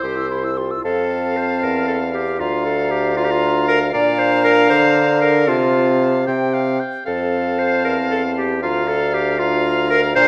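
A wind quintet opens together at once on a C chord: a bright concert flute carrying the melody high above, an oboe on a second line, a clarinet and French horn filling the accompaniment, and a bassoon holding the bass. This fragment of a cheerful, lively classical-period movement in F major moves in a flexible, rubato 6/8 at 78 dotted-quarter beats per minute. The flute sings with a pure, straight tone and crisp attack, playing expressively, while the present oboe and the up-front bassoon both carry a light vibrato. The clarinet's clear, smooth top sits beside the horn's warm, smooth-topped sound in the middle of the texture. Harmonies move through F, Bb and C, with inverted chords over D and C in the bass along the way. A wet recital-hall reverb of about 1.4 seconds surrounds the ensemble, and the clip breaks off at 10.3 seconds as part of a longer piece.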